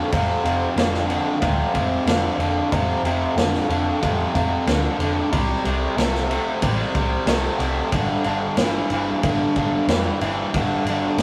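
An overdriven electric guitar opens the clip alone at 0.0 seconds with a bright, double-tracked, picked riff set up front, moving through F5, C5 and G5 power chords in the low register. A fraction of a second later the bass and drums join, and all three play together through to the close at 11.2 seconds of this short cut from a longer piece. The style is blues rock in a power-trio mold with a southern rock lean, running at a straight 92 BPM in 4/4, and the mood is gritty and swaggering. The vintage drum kit sits up front with a saturated, mid-forward tone, a tight kick, a medium-tuned snare and dark ride cymbal with a rolled-off top. Underneath, the foam-muted picked bass gives a round, dark, amped low end. The whole trio sounds like a rough rehearsal-room take dressed in a short, wet studio reverb, with the pitch sitting a hair under standard tuning at A4 = 439 Hz.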